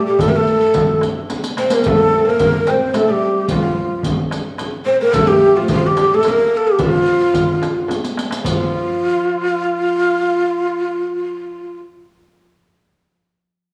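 The recording sounds like worn, warbling cassette tape with drifting pitch, its small room ambience folded into a wet recital-hall reverb. This is a warm, festive Arabic maqam ensemble piece in F maqam ajam, moving at 109 BPM in a straight 3/4, cut from a longer performance. A breathy, end-blown reed-cane ney carries the melody up front, close-miked, tongued and slightly unsteady with vibrato. Beneath it, a woody, fretless oud plucked with a plectrum on double strings plays a quieter second line. Darbuka, frame drum and riq enter at 0.2 seconds: the small metal-shelled darbuka sounds crisp and high under soft hands, the deep frame drum sits distant in a large room, and the riq adds bright jingles from a similar distance. Two drum fills mark the passage, and the percussion stops at 8.7 seconds, leaving ney and oud to carry a new section through to 11.8 seconds.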